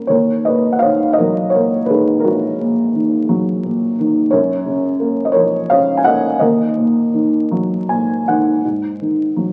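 In a rubato 6/8 lilt of about 53-60 BPM, this wistful, melancholic classical excerpt in Eb minor features a solo felt-muted upright piano, dark, boxy and intimate with short sustain, moving from Ebm7 to Gbmaj7 at 4.3 seconds and back to Ebm before a brief fill at 7.5 seconds, heard up front in a wet recital hall reverb along with the crackle of a very old 78 rpm record.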